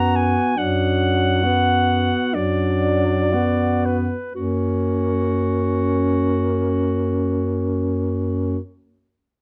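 Classical, lyrical and serene, this brief excerpt for single-reed quartet moves in a very slow, rubato 4/4 at 28-37 BPM in F# major: an up-front, bright clarinet sings the melody over an alto saxophone's smooth, vibrato-tinged second line, while a mellow, soft-attacked tenor saxophone accompanies from a more distant, roomy position and a dark bass clarinet holds F#2 close by; the opening slows over Bm/F# before settling onto F# at 4.3 seconds, captured by close, detailed microphones with light reverb.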